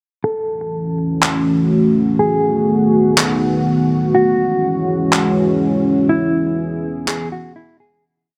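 A sparse half-time beat of electronic handclaps runs from 1.2 to 7.2 seconds, their sampler-style hits pitched down, compressed and gritty, with a tape-warm, small-room character placed up front. This short atmospheric cloud-rap piece feels ethereal and spacious, built entirely as a breakdown. A mellow electric guitar opens at 0.2 seconds with a clean, fingered, sparse looping melody that repeats like a sampled loop, its dark tone shaded by tremolo, delay and a low-pass filter. A deep analog pad joins at 0.7 seconds, holding moody, full-bodied chords from detuned sawtooth and triangle voices with a sub octave, a slow attack and a long release, thickened by chorus and a low-pass filter. The harmony moves through F#m7, B7, E69 and C#m7 under a filter sweep spanning the whole piece, light reverb adds air, and the sound fades out over the final two seconds.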